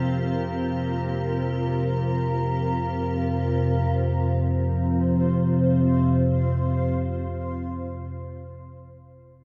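An analog drone sits up front in this cavernous, dark ambient excerpt, its nasal sawtooth and pulse-wave tone shifting through pulse-width modulation and a moving notch, thickened with chorus, and held low between F2 and C3 until 8.1 seconds. Above it, a granular cloud pad sustains chords between C4 and C5, its detuned sine tones forming a blurred, cloudy, evolving haze, coloured by its own built-in reverb. An icy glass pad adds a faint, crystalline shimmer on G4, airy and bright with a noise layer, chorus and reverb, before it stops at 3.9 seconds. The music unfolds in free time, cut from a longer piece, with every part easing in slowly and fading on a long release. A moderate spring reverb and a faint mains hum give the dim space its closing weight, and the granular cloud pad lingers alone until 8.4 seconds.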